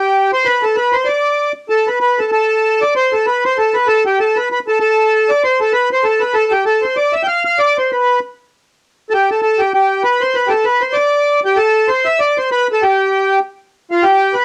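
A cassette-recorded home take with a moderate studio reverb carries this wild, spirited Celtic folk fragment at 194 BPM in a swung 4/4, where a lone accordion sits up front with a reedy, dark richness, playing solo from F4 to G5 across the full 14.4 seconds as it moves from its opening theme into a contrasting passage at 11.6 seconds.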